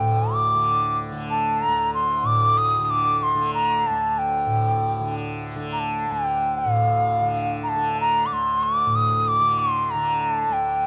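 Set in a five-beat cycle with a straight feel, this short Indian classical passage gradually speeds up over its 10.9 seconds, clipped from a longer performance. The mood is solemn and introspective. A bamboo bansuri carries the melody in a high register, its airy tone shaded with vibrato and tongued articulation, and it sits close and up front. Beneath it, a softly plucked tanpura holds a low, buzzing drone with a warm, shimmering resonance, set lower in the balance. Both parts sound together from start to finish, captured with close, detailed microphones and a light touch of reverb.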